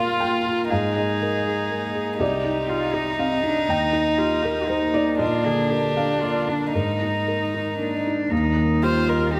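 Neoclassical piano and strings in a rubato three-beat metre, tender and intimate, taken from a longer piece. A felt-muted upright piano sits up front, mellow and boxy with audible action noise, under a rich solo violin melody played sul tasto with light vibrato and an airy bow; a single cello carries a second line, and a very quiet studio string section holds smooth sustained chords. At 8.3 seconds a fingerpicked Celtic harp rings in with arpeggios, and a pure, floating bowed double bass takes the bass, all set in a moderate scoring-stage reverb.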